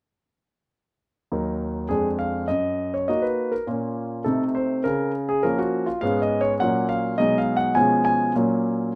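In a straight 2/4 at 102 BPM, this brief, serious and elegant classical-period sonatina fragment in E-flat minor is carried by a solo concert grand piano, which plays from 1.3 to 8.9 seconds across a range from Eb2 to G#5. The piano sounds intimate, polished and up front, with deep bass and audible action noise, set in light reverb. Its harmony moves from E-flat minor through B-flat minor toward F-sharp major and G-sharp minor seventh colours before the passage is cut from the longer piece.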